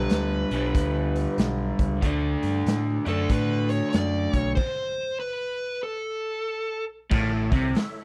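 A dry, close 1970s-style studio sound with a faint mains hum frames this swaggering, gritty slice of blues rock and southern rock, swinging at 94 BPM in 4/4. A crunchy, double-tracked guitar riff, a growly overdriven picked bass and a raw garage drum kit with a punchy kick and rolled-off top drive over G and D into a stop at 4.6 s, as a dark, smooth overdriven lead guitar carries the melody up front. At 7.1 s the band lands on A and a fat, percussive tonewheel organ with key click and slow rotary speaker enters with sustained chords.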